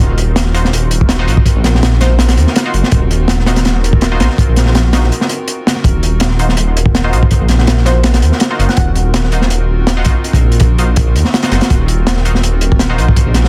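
Nostalgic and raw, this drum and bass excerpt at 164 BPM in Eb dorian rides a crunchy, saturated breakbeat kit with a high-tuned snare and punchy kick over a deep, rumbling detuned saw bass, while a warbly lo-fi pad holds Ebm69 chords in the background, nasal band-passed stabs carry 12-bit sampler grit and dub echo, a glassy wavetable pluck surfaces briefly at 2.0 and 7.9 seconds, and a short break arrives at 5.1 seconds in a dense, heavily limited small-room mix.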